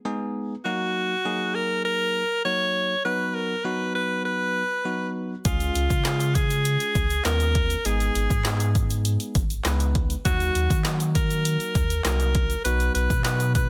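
A bell-like tine electric piano opens this driving, bittersweet dance-pop excerpt in Eb minor at 100 BPM, pumping against the sidechain as a bright, up-front alto saxophone enters at 0.6 seconds with a vibrato-laden pop melody trailed by digital delay. A deep house kit with a punchy kick, woody snare, dark hats and handclaps, a full, mellow sub bass with octave, and a grainy tube shaker in the background all arrive at 5.5 seconds over a dense, heavily limited modern master.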